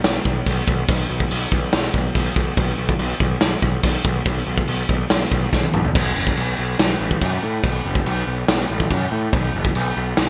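A bright, 1980s-style digital production with light reverb frames this dark, heavy metal excerpt at 142 BPM in a straight 4/4. A growly, overdriven fuzz bass sits up front, picking low lines from F#1 to A2, while an acoustic drum kit with a punchy kick, medium-tuned snare, toms, crash and china cymbals rings out through gated reverb. A drum fill at 5.5 seconds leads into a new section at 5.9 seconds, and both parts play throughout.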